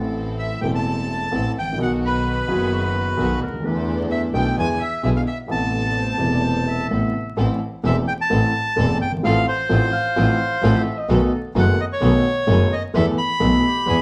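This passionate, dramatic tango excerpt in A minor opens with a dark, woody upright piano up front, a bowed double bass with an earthy, biting edge and light vibrato, a lush studio string section playing stabs in the background, and a distant, roomy clarinet in classical style carrying a second line. At 0.4 seconds a reedy, bright bandoneon takes the melody, sitting mid-forward and close to the listener, while a lone violin, intense and biting but placed far back, adds another second line until 6.9 seconds. The pulse sits around 129 BPM in 4/4, yet the feel is rubato, giving the phrases a pushed-and-pulled tension. Two statements of the same section pass through moody harmony that moves from Am through B and E7 colours, then on to F/A, B7 and a closing Esus4. The band sounds as if playing live in one room, wrapped in a wet studio reverb and a faint layer of vinyl crackle.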